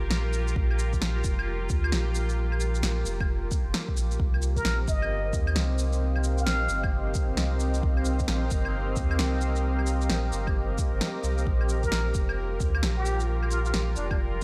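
Future garage at 132 BPM in C minor, this rainy, wistful excerpt rides a swung sixteenth-note feel over slow chords moving from Gm7 to Cm7 and back. A deep, moody pad of detuned, wave-folded sawtooth tones holds sustained chords throughout, with chorus and its own reverb, and it pumps with sidechain compression alongside a round, sine-like sub bass that sits up front and pumps as well. The drums come in almost at once, layering a cracking electronic snare with shaker and claves, and the deep, tape-warm kick arrives at 0.6 seconds, both set in a small room ambience. A plunger-muted trumpet plays short jazz-style solo phrases at 4.6 and 11.8 seconds, breathy and whispered, with wah-wah inflections, scooped notes, vibrato and an analog delay, sounding distant yet intimate. Light reverb softens the whole mix, giving it a hazy, wistful calm.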